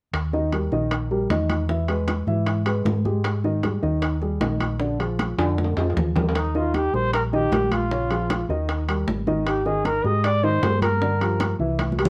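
A round, punchy hollow-body electric bass opens this danceable Afro-Cuban jazz passage alongside low-tuned, close bongos struck with hard hands, bright congas set back in a small room, and ringing, vintage metal-shell timbales, with a dark, mellow grand piano joining almost at once. After a drum fill at 5.4 seconds, a breathy, whispered trumpet enters up front at 6.4 seconds with soft attacks, scooped notes and vibrato, its distant, roomy tone lending an intimate, sophisticated jazz solo. Light reverb and the warbling pitch drift of worn, old cassette tape color the recording, which is cut from a longer piece.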